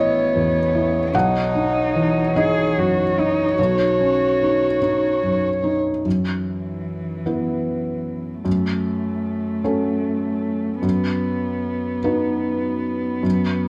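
Neoclassical piano and strings in a slow, rubato 6/8 at 50 BPM, melancholic and reflective, where a felt-muted upright piano with audible action noise sits up front alongside a close, sul tasto cello second line while a woody, dark violin sings its vibrato melody on C#5 until 5.8 seconds, moving from Aadd9 and Badd9 toward F#m, all under light reverb and the warbly pitch drift of worn cassette tape in this excerpt cut from a longer piece.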